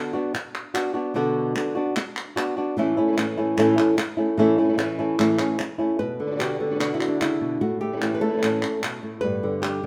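Flamenco in B minor at 149 BPM in a straight 4/4, this fragment of a longer piece feels fiery and mournful, tuned slightly sharp with A4 at 441 Hz. An up-front, fingerpicked acoustic flamenco guitar carries the melody from the start, its warm tone ranging from G2 to B4. Palmas hand claps join at 0.3 seconds, sounding crisp, compressed and saturated and sitting lower in the balance. At 2.8 seconds a second, darker flamenco guitar enters with thumb-plucked stabs as the harmony moves from Bm to A. A new passage begins at 6.0 seconds, returning to Bm, then A, before closing on a Gadd9, all held within a wet, large studio reverb with a 1.4-second decay.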